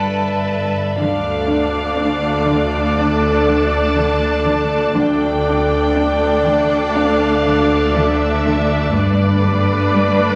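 A tense, uneasy cinematic passage opens on a Gadd9 chord, with two bowed chamber violin sections, an evolving wavetable pad, a clear symphonic cello section and a chamber double bass section all sounding from the start. One violin section carries the melody in a high register while the other, placed up front, plays a second line just beneath it, both smooth and even with vibrato. The pad sits in the background, bright and morphing, its slow attack and long release colored by a phaser and its own reverb, while the lush cellos and the focused double basses hold down the low end. At 1.0 seconds the harmony moves to D minor as a focused chamber viola section enters with accompaniment and a second, background cello section takes up a riff, before the music returns to Gadd9 at 8.9 seconds. The whole ensemble is set in a wet scoring-stage reverb, and this short fragment is cut from a longer piece.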